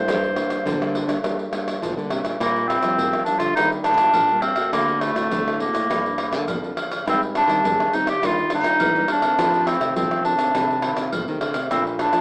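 A yearning, bittersweet blend of samba and choro, this excerpt features a bright, soft-attacked clarinet in a vintage classical style, carrying the melody up front and taking a solo over the opening 2.4 seconds. Two fingerpicked nylon-string guitars support it: one plays the accompaniment with plate reverb, and a full-bodied one sits in the background on the bass line. Egg shaker, deep surdo, pandeiro, tamborim and agogo bells fill out the groove, all within a rough home-demo mix with a small-speaker sound.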